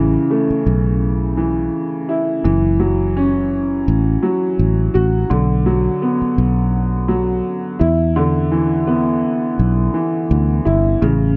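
Boom-bap hip-hop at 84 BPM with a gently swung sixteenth feel, gritty and reflective, this short 11-second clip pairs a woody, boxy upright piano with long sustain and high- and low-pass filtering, carrying chords from A through F#m7 and Bm to E7, against a dark, round, foam-muted fingered electric bass sitting up front, all in a light studio reverb with a dull, rolled-off top.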